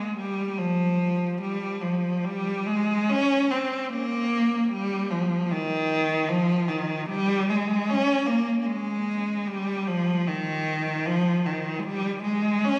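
A rich, bowed solo cello sits up front, singing a serene, lyrical line between Eb3 and Db4 with expressive vibrato and portamento. This classical excerpt in Ab major, tuned to A4 = 444 Hz, moves freely in 3/4 around 75 BPM, its uneven beats bending with rubato across its 12.8 seconds. Captured on a phone in the room, the single player is bathed in a lingering church reverb with a 3.4-second decay.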